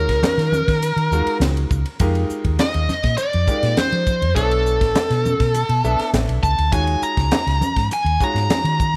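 A bluesy, distorted lead guitar carries the melody up front from the first second, over brilliant grand piano accompaniment and a round, woody fretless bass, while a tight, dry funk kit with a high-tuned snare and soft-handed, low-tuned congas in the background push this slick, driving electric jazz fusion excerpt at 102 BPM through Ebm11, Fm11 and Bm11 under light reverb.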